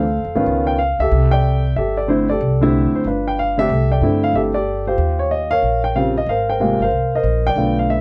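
Swung eighth notes at 186 BPM in 4/4 drive this warm fragment of a jazz piano trio in C major, tuned to A4 = 437 Hz, where an intimate, up-front grand piano with natural, audible action noise carries the melody over colourful harmony such as Db9, G9 and Eb13 while a dark, woody pizzicato upright bass on gut strings supplies a thumpy low line, the pair sitting in a light reverb.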